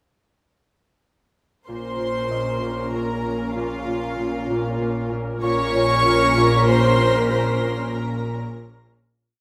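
Mysterious and tense, this suspense film cue in 3/4 opens at 1.7 s with a floating, sul tasto violin section carrying the melody up front, a smooth studio violin section doubling it an octave below, woody viola chords with vibrato, a rich cello section and a clear chamber double bass section holding the bass, and a thumb-plucked Celtic harp ringing out a pulsing ostinato. From 2.3 s, a mellow concert harp adds very quiet sparse single notes, and from 5.4 s, a pure background violin section places high dissonant clusters, all bathed in a wet scoring stage reverb before the fade-out that begins at 7.3 s.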